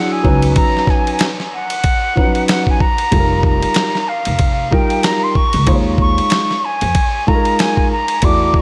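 An airy, expressive concert flute carries the melody from F5 to D6, its vibrato and tongued notes sounding distant yet up front through a dub echo. This smoky, cool jazz-hop excerpt moves at 94 BPM in 4/4 with a 59% swing on the sixteenths, cut from a longer piece. A dark, mellow concert grand piano with deep bass and long sustain accompanies from the start, also treated with dub echo, while a woody pizzicato upright bass on steel strings joins at 0.2 seconds, holding the low end between F1 and F2. At the same moment a gritty, compressed sampler-style drum kit enters up front, with a thumpy kick, medium-tuned snare, hi-hat and ride cymbal. The harmony shifts through Db9sus4, F9sus4 at 3.1 seconds and Eb9sus4 at 5.7 seconds, all within a single section set in light reverb and an echo-heavy mix.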